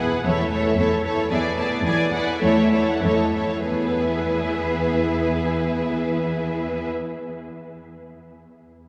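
Quick classical-period string orchestra movement in E major and 2/4, spirited and graceful at 89-114 BPM, with a slowing from 0.8 to 3.7 seconds as the harmony moves from A/E to E7 and back to A/E before settling on E. A distant violin section carries the soft-edged, portamento-laden melody in the background, while a focused second violin line and a smooth, even viola accompaniment sit up front, and a close cello section holds a low E beneath them. The bowed ensemble blooms in a lush church or concert hall, wrapped in a long, wet cathedral reverb, and the clip is cut from a longer piece.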